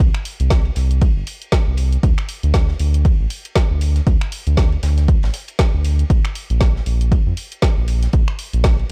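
A dark, late-night deep house groove opens with a punchy, up-front electronic kick and a round, sustained analog bass with tube saturation and sidechain pumping, together with a woody snare, finger snaps and dusky hi-hats from a layered electronic kit, while a dry acoustic funk kit of high-tuned snare and filtered, pumping ride cymbal sits in the background, all in a close, almost reverb-free mix cut from a longer piece.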